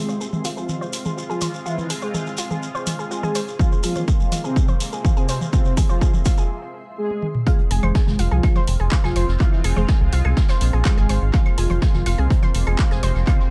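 Dry and echo-heavy, this cut from a longer melodic techno piece moves at 124 BPM in F harmonic minor, hypnotic and melancholic over an Fm chord. A deep, round analog bass sits up front, pumping against the beat, while a mellow synth brass carries the melody with a dark, detuned, gritty edge, ring modulation, vibrato and tape echo. Underneath, a bright, resonant pad sustains slow-swelling chords and a blurred granular cloud pad hovers in the background, as a chorused analog pluck spins arpeggios through a filter sweep during the build-up. A grainy shekere enters at 0.1 seconds, an overdriven techno kit of claves, handclaps, hi-hat and toms follows at 0.3 seconds, and a heavy, overdriven electronic kick joins at 3.6 seconds with drum fills leading into a short break. The drop lands at 7.5 seconds, where the shekere has already dropped out and a brushed jazz kit of hi-hat and snare slips in quietly behind the driving electronic beat.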